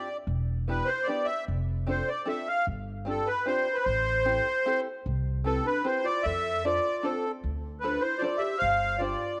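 This musette waltz in 3/4 feels charming and nostalgic, a short fragment lifted from a longer piece. The accordion carries the melody up front from the start, its reedy, sweet tone colored by a light tremolo tuning and a dark, smooth character. Beneath it, an open-back banjo supplies fingerpicked accompaniment that is mellow yet twangy and plunky, while a pizzicato upright bass enters at 0.3 seconds with a woody, thumpy sound that also sits forward in the mix. At 5.5 seconds a warm clarinet joins with a classical-style second line, its smooth top adding a counter-voice. The harmony moves through jazzy chords such as Em7, F6, Cmaj7 and G7sus4, and a moderate echo chamber reverb gives the ensemble a studio ambience.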